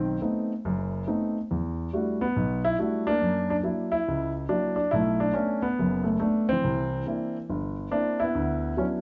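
Warm and sophisticated, this nine-second passage cut from a longer solo jazz performance swings at 140 BPM in 4/4, its mellow, up-front grand piano with short sustain spanning F#1 to F#4 as it moves through B7b9, Em11, F#7b13, Bm7, C9 and D69 chords, all set in a moderate large-studio reverb with a dark production.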